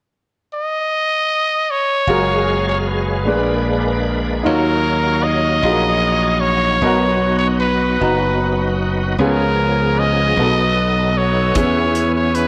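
A growling, raspy trumpet with light vibrato opens this jubilant, uplifting slow gospel excerpt at 0.5 s, carrying the melody at 51 BPM in 6/8 and F# major through slapback and tape echo, before a clear baby grand piano with its own slapback echo, a shouting tonewheel organ through overdrive, chorus vibrato and a fast rotary speaker, and a punchy, glassy slap bass join at 2.1 s over chords moving from F#maj9 through D#m9 and C#7 to E6, with a soul drum kit of hi-hat and tight kick arriving at 11.6 s, the recording set in a lush hall reverb for a big arena sound.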